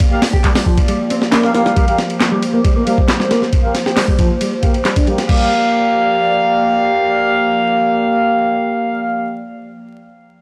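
Breakbeat in G minor at 136 BPM, this swaggering, gritty excerpt rides a compressed, thumpy sampler-style drum kit with analog handclaps and a dark, fingered electric guitar riff with 12-bit grit, all of which drop out by about 5.5 seconds, while up-front brass stabs with filter sweeps and tape echo carry on over a warbling, detuned, sidechain-pumped pad of sustained chords opening on Gm7, the whole recording coated in vinyl crackle and transformer saturation.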